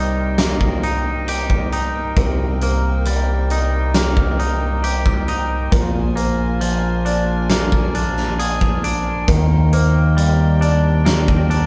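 Over a straight 4/4 pulse, a big, punchy rock kit with a fat snare enters at 0.4 s beneath a growling, overdriven fingered bass, while a twangy, clean electric guitar picks arpeggios through spring reverb, a felt-muted upright piano adds soft, dark arpeggios with audible action noise, and a rich, earthy chamber string section holds bowed chords in the background, giving this brooding, cathartic post-rock passage the feel of a live band moving from Cm7 through Bb7 to Ebmaj7 in one room.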